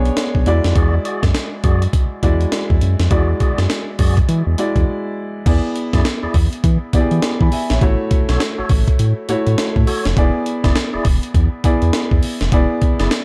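A swung 102 BPM new jack swing groove in 4/4 drives this slick, punchy R&B excerpt, with a gritty, compressed breakbeat kit (thumpy kick, high-tuned snare, crash and hi-hat) and a round, deep analog bass carrying the low end under clear, open baby grand piano chords and lightly overdriven tonewheel organ stabs with key click, fast rotary speaker and tape echo, moving through E9, E7 and A6 in a dark, dry production with a brief break at 4.9 seconds before a new section at 5.5 seconds.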